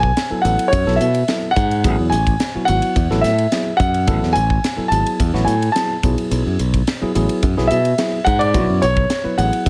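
Lightly reverberant and softly rolled off at the top, this short cut from a longer electric jazz fusion piece moves at 107 BPM in a straight 4/4 with an intense, nocturnal mood, as a warm, short-sustained grand piano carries the melody up front over clean, bright tine electric piano chords, a growly, punchy fingered electric bass, and an airy, polished studio drum kit with a high-tuned snare, tight kick, hi-hat and ride, moving from B7sus4 to Asus2 at 1.8 seconds and Bsus4 at 6.0 seconds.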